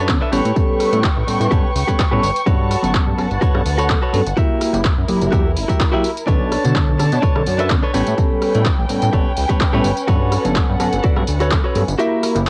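Sensual and groovy, this filtered disco house excerpt at 126 BPM with a light swing rides a fat, detuned sawtooth bass, a bright direct-recorded guitar riff, a bell-like tine electric piano through a phaser, lush dark bowed violin chords, a punchy up-front electronic kick that drops out at 12.0 seconds, and an overdriven analog drum machine of handclaps, hi-hat, rim click and tambourine, with sidechain pumping and cassette-tape grit colouring the mix as it moves through chords from A9 to Gmaj9#11, F#7b9 and Bm9.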